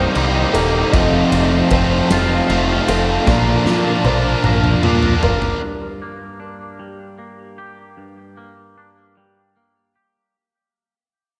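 A dreamy, reverb-soaked mix opens this cathartic, brooding post-rock passage at 51 BPM in 6/8. A growling, overdriven electric bass sits up front beneath a biting overdriven guitar, a bright, scooped distorted guitar, a punchy, fat-snared rock kit, lush bowed strings and a thick-felted upright piano with audible action noise, all moving through Cm7, F7 and Bbmaj7. After a drum fill from 3.3 seconds, the band drops away at 5.6 seconds, leaving the clean, twangy electric guitar's chorus-laden arpeggios to fade out over Gm.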